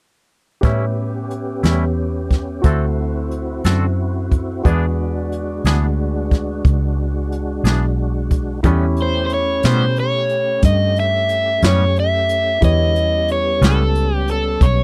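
Gritty and soulful, this slow 12/8 blues has a dry, close 1970s-style studio sound, with brushed jazz drums up front, a dark, round, foam-muted electric bass, a twangy, clean electric guitar with tremolo, a polished grand piano and a clear tonewheel organ through a slow rotary speaker with key click, before a crunchy overdriven guitar takes the melody at 9.0 s.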